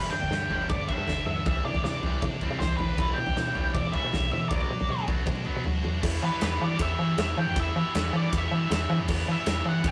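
A straight 4/4 pulse at 157 BPM drives this bittersweet, cool indie rock passage in E minor, where a big, up-front acoustic drum kit with a punchy kick, medium-tuned snare, bright cymbals and toms anchors a woody, round FM bass, a biting overdriven guitar riff sitting in the background, a scooped high-gain guitar riff, and a fuzzy octave-fuzz lead guitar carrying the melody over chords moving from G6 through Cadd9, Em/B and Bm to Em at 6.0 seconds, all captured with light reverb in a rough rehearsal-room sound.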